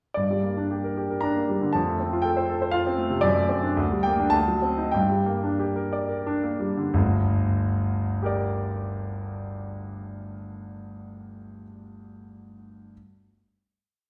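Heard from further back in a wet recital hall with a 1.3-second reverb, this brief, complete romantic character piece for solo piano sounds stormy and brooding in G minor, in 3/4 with a rubato feel between 86 and 122 BPM. The clear concert grand, with its deep bass and polished, short-sustained tone, carries a single-line melody over sweeping arpeggios, ranging from G1 to Bb5. The harmony moves from G minor through F and D7 back home, slowing down from 2.5 seconds before a final chord rings out at 6.9 seconds.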